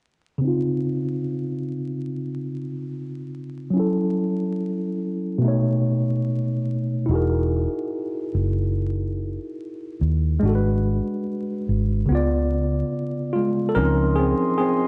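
Dusted with vinyl crackle and light reverb, this dreamy, nostalgic lo-fi hip hop excerpt in Db major drifts at 72 BPM with a swung 16th feel: a worn, slightly out-of-tune, lightly overdriven tine electric piano sits up front through a filter sweep over lush jazz chords, a dark, round, foam-muted electric bass joins at 7.1 seconds, and after a brief break the piano takes a solo at 13.7 seconds while a distant, roomy brass ensemble adds mellow sustained chords with light vibrato.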